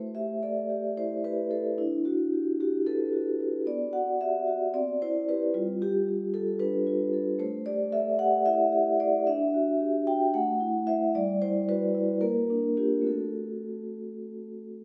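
Contemporary classical writing for solo vibraphone, this flowing, hypnotic fragment moves in a loose, rubato 7/8 across its 14.8 seconds. The medium-mallet tone sits up front, metallic and ringing with an airy shimmer from fast motor vibrato, and roams from G3 to G5 through shifting harmonies such as Am7, D6, G9 and a passing Bb. A generous recital hall reverb lets each struck chord bloom and hang in the room.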